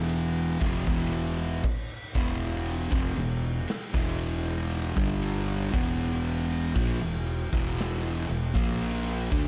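Heavy and sludgy, this short cut from a longer stoner and doom metal piece settles into a slow, straight 4/4 groove over a single E minor chord. A double-tracked fuzz guitar carries the riff from the first moment, its picked, compressed, distorted tone sitting up front and spanning from low in its range up into the middle register. Beneath it, a fingered electric bass played direct and amped adds a dark, round, overdriven fuzz that anchors the bottom end. From 0.1 seconds a raw garage drum kit joins with a punchy kick, a medium-tuned snare, crash and ride cymbals, its saturated, gritty, warm sound placed up front in a bright stone room that pumps, with a rolled-off top. Studio reverb and a dark, warm production bind the whole passage into one murky, weighty slab.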